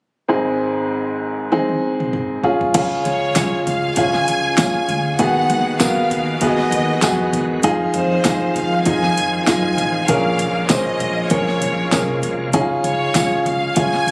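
A bright, brilliant upright piano opens this uplifting piano-driven pop excerpt at 0.3 s, setting out chords in D-flat major at 98 BPM with a lightly swung sixteenth-note feel. At 1.5 s a deep house drum kit arrives with a fill, bringing a deep kick, a fat snare, metallic hats, crash cymbal and toms in an electronic, layered, tape-warm sound. From 2.7 s a pizzicato upright bass adds a woody acoustic low end, while a full, shouting tonewheel organ holds sustained chords in the background, colored by chorus vibrato and a fast rotary speaker. Soon after, a clear, focused violin section takes the bowed melody up front with vibrato, and a jingly, close and dry tambourine sits behind it. The harmony moves through Abm7/Eb, Fm7 and Bbm7 before settling back on D-flat, and the whole take has the roomy, compressed feel of a phone recording in a club-like space.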